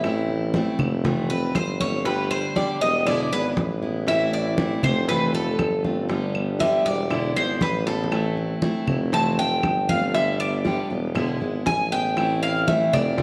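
A bright, metallic Cuban tres with double strings plays up-front arpeggios from 1.3 s in this nostalgic excerpt of Cuban son and guajira, over a picked steel-string acoustic guitar with fresh strings, a clear tuba bass with vibrato, thick damped low-tuned congas, very quiet round bongos and woody claves in the background, the harmony cycling through Am, Fmaj7, G and E7 in a wet echo chamber, with a drum fill at 7.9 s.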